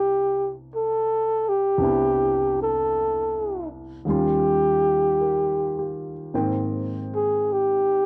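A jazz ballad at a slow 53 BPM in 4/4, swung on the eighth notes, with a late-night, intimate mood. A breathy flugelhorn carries the melody up front, its tone mellow and whispered, with vibrato, a soft attack and a smooth top, staying within a narrow span from G4 to A4. A baby grand piano accompanies throughout, sounding present and polished, ranging from deep bass to the upper middle of the keyboard and sitting below the horn in level. The harmony moves from Cmaj9 to Eb7 at 4.0 seconds, then settles on Abmaj7 as a new section begins at 6.3 seconds. The sound is a dry, close studio recording in a 1970s style, with a modest booth ambience, and this short excerpt is cut from a longer piece.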